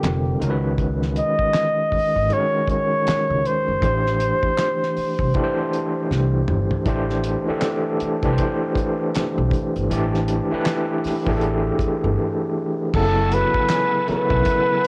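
A lazy swing on the sixteenths drives this introspective, smooth neo-soul R&B passage, cut from a longer piece. A cloth-damped, thuddy drum kit with dark cymbals, a fat snare and handclaps sits under woody, growly pizzicato upright bass and a barky, overdriven tine electric piano coloured by fast tremolo and plate reverb. Up front, a flugelhorn with vibrato and scooped notes carries the melody until 6.1 s, when a drum fill takes over, and returns at 13.0 s, just after a reedy, bright tonewheel organ with key click and fast rotary speaker brings in high sustained chords at 12.9 s. A very quiet, mellow horn section joins at 13.3 s with jazz-style stabs, while cassette-tape grit tints the flugelhorn and drums.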